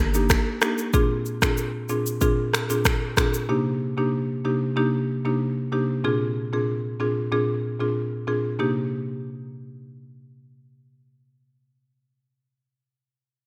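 Afrobeats in C minor at 94 BPM, hypnotic and mellow, built on a buzzing, woody marimba played with medium hard mallets that sits dry and up front, cycling between Cm7 and Bb7 chords. An electronic afro-pop kit with a deep kick, rim clicks, finger snaps and shaker, treated with gated reverb, opens the excerpt alongside the marimba before dropping out at 3.5 s. The marimba then carries on alone through a new section at 8.6 s, set in a light digital ambience with bright 1980s-style production.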